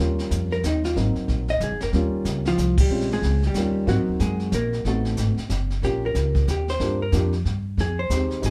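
A clean, compressed hollow-body electric guitar carries the melody up front from 0.5 s in this playful, swinging small-group jazz fragment at 185 BPM in 3/4, backed by a mellow, woody upright piano, a thumpy pizzicato upright bass and a distant, roomy brushed drum kit with a boomy kick, set in a moderate club reverb, with a band accent at 2.7 s over changes built around Eb9.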